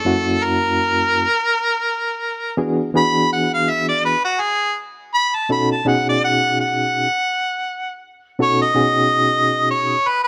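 A mellow, up-front harmonica leads this gritty, laid-back blues at 83 BPM in 4/4 with a swung feel, playing a solo with light vibrato and punchy, scooped notes that have a vintage edge. Beneath it, a bright, reedy electric piano with tremolo plays the accompaniment cleanly and directly over F#7, E9 and B9 chords, tuned to A4 = 438 Hz. Light reverb and a small room ambience surround both parts in this passage cut from a longer piece, with the piano stopping at 10.0 seconds and the harmonica at 10.3 seconds.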